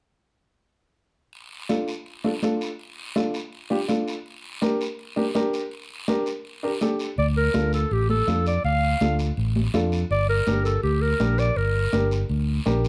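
Passionate and driving, this cumbia excerpt opens with a raspy guiro at 1.3 seconds, joined by a worn, slightly detuned upright piano and bright, high-tuned congas over a Dm-Gm vamp, before a smooth classical-style clarinet with slapback echo and plate reverb takes the solo melody at 7.2 seconds alongside a round, punchy fingered electric bass, all in a dark, lightly reverberant production.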